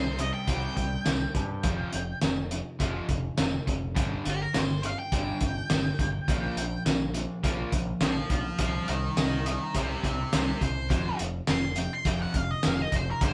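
Swaggering and brooding, this short classic rock cut at 104 BPM in a straight 4/4 puts an octave-fuzz lead guitar soloing with wah and distortion from G4 to C6 over a raw, double-tracked garage guitar riff, a growling, punchy overdriven bass, and a cloth-damped, thuddy drum kit that enters at 0.2 seconds with a fat snare, tight kick, hi-hat and tambourine, muffled and gritty up front, all played live in one room with light reverb as chords move from C5 and Fsus2 through G5 and Bb5 back to C5 and F5.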